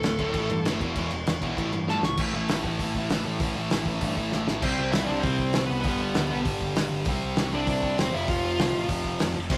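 Punk rock with a rebellious, upbeat drive, this short cut from a longer piece opens with a smooth, overdriven lead guitar taking a solo up front over A5, E5 and A chords. The lead drops out at 2.2 seconds and returns at 4.6 seconds to carry the melody over a C, G, C and F5 progression. Underneath, two picked distorted guitars play the riff: one sludgy and sitting in the background, the other tight and bright. A growling, round electric bass with overdrive adds punch at the low end. The loose indie drum kit sits forward with dark cymbals, a medium-tuned snare and a punchy kick, and short drum fills lead into each new section. The rough rehearsal-room sound carries warm saturation and a moderate studio reverb.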